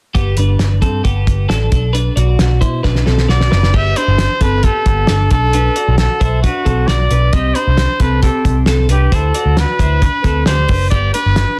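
A clean, twangy twelve-string electric guitar opens with arpeggios dressed in subtle chorus, plate reverb and tape echo, over a round, foam-muted picked bass and a cloth-damped, thuddy drum kit with a fat snare, and a bright trumpet with vibrato enters during a drum fill at 3.3 seconds to carry the melody in this youthful, breezy jangly indie pop cut from a longer piece.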